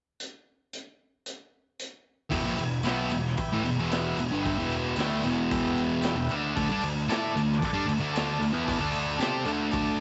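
This excerpt opens with a raw garage drum kit alone, its crash cymbal, hi-hat, boomy kick and medium-tuned snare sounding saturated and gritty in a small room, with a rolled-off top. At 2.3 seconds the full band arrives on an E minor chord, led by a thick, double-tracked fuzz guitar riff that sits up front, bright and distorted, spanning E2 to C5. Beneath it, a growling picked electric bass adds punchy, overdriven weight, while a vintage combo organ holds buzzy sustained chords in a high register, colored by light vibrato. A very quiet, jingly tambourine joins at 2.6 seconds, and the harmony shifts to a D5 chord at 6.6 seconds. At a straight 113 BPM in 4/4, this menacing, raw garage rock piece has a dark, close sound with light reverb.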